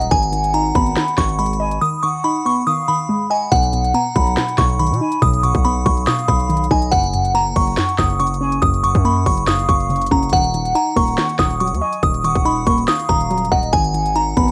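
Menacing and hard-hitting, this half-time trap cut is led by a glassy, crystalline synth bell with chorus sitting up front, while a breathy, hollow jazz flute with tape echo trails in the background as a second line. Beneath them, a warbling, dusty pluck with a dark, detuned edge carries the accompaniment, a distorted, saturated 808-style bass hits heavy, and an overdriven trap kit delivers a hard-clipped kick, sharp snare and crisp hats. The whole lo-fi, cassette-tinged mix drops into a silent gap from 1.8 to 3.5 seconds before everything returns.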